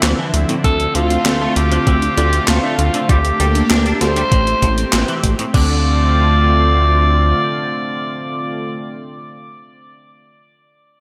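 A big arena sound fills this cinematic, nostalgic synthwave excerpt, bathed in a moderate concert hall reverb. At 98 BPM in D minor, a raspy, gritty tenor saxophone sits up front with the melody, carried by tape echo and slapback echo. Underneath, a shimmering chorused pulse-width pad holds sustained chords with sidechain pumping, and a glossy chorused synth bass with tube saturation runs through to 7.3 seconds. A lush, very quiet unison pluck plays arpeggios, and a twangy clean electric guitar riff sits in the background with ensemble chorus, delay and slapback echo, both stopping at 5.8 seconds. A clean 12-bit drum machine supplies tape-colored snare, handclaps, hi-hat and crash, joined at 0.6 seconds by a thumpy electronic kick, and the drums drop out at 5.7 seconds, shortly after the harmony returns to Dm7 at 5.5 seconds.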